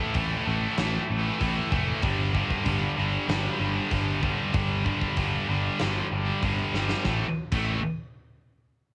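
A pair of scooped, high-gain electric guitars sits up front in this short heavy metal excerpt, both picking a dark, heavy riff between G2 and A3 that moves from A5 to G5 at 2.0 seconds. At a steady 96 BPM in straight 4/4, a picked electric bass growls low underneath, staying between F1 and A1 with a bright, direct-and-amped edge. A big acoustic rock kit drives the groove with a fat snare, a tight kick, hi-hat and crash cymbal, its sound mid-forward with a rolled-off top and a cassette-tape coloring. A drum fill at 6.7 seconds leads into a new section, where the harmony returns to A5 at 7.1 seconds. The whole recording is dry, with little reverb, and has the rough character of a home cassette recording, cut from a longer piece.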